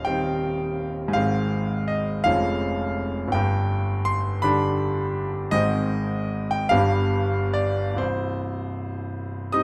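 Bittersweet and stormy, this short fragment cut from a longer romantic character piece for solo piano in C minor moves in a slow, rubato 6/8 at 38-56 BPM. A clear, polished concert grand sits up front with deep bass, ranging from C1 to Eb6 through chords that pass from Cm/Eb through Ab, Db/F and G7 before settling on Cm at 8.0 seconds, all captured by close, detailed microphones in a moderate recital hall reverb.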